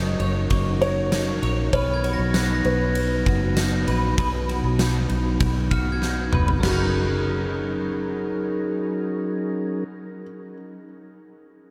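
A straight 4/4 pulse at 98 BPM carries this dreamy, ethereal dream pop excerpt in F# major, where a huge arena drum kit with punchy kick, fat snare and brilliant cymbals plays from 0.2 s, rolls a fill at 6.0 s and stops at 6.8 s, above a dark, round, foam-muted bass up front, a soft, flute-like tonewheel organ holding chords through a slow rotary speaker, a thick-felt upright piano singing the intimate melody with audible action noise and delay, twangy clean guitar arpeggios with ensemble chorus and delay, and a bell-like brass-mallet glockenspiel ringing in the background, all soaked in a vast ambient reverb as the chords move from F#6 to Bmaj7 and back.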